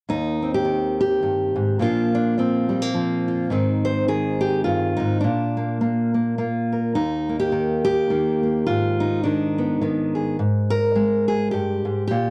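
A lilting swung waltz feel carries this nostalgic, gentle folk excerpt, where a lone fingerpicked steel-string acoustic guitar, full-bodied and up front, moves through chords such as Eb6, Bbadd9 and a wistful Abm before settling on Absus2, its notes ranging from Eb2 to C5 in a dry, close 1970s-style studio sound touched with light reverb.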